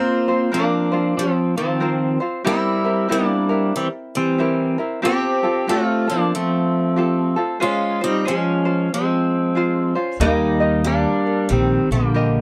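Hawaiian music in a relaxed, sunny mood, this short cut from a longer piece moves at 93 BPM in 4/4 with a swung feel in Bb major. A twangy, compressed electric pedal steel carries the melody up front with slide and volume swells, while a boxy picked archtop guitar with finger squeak plays a second line and a light, fingerpicked tenor ukulele supplies accompaniment. At 10.2 seconds a woody pizzicato upright bass with steel strings enters up front, all captured in a dry, close 1970s-style studio sound.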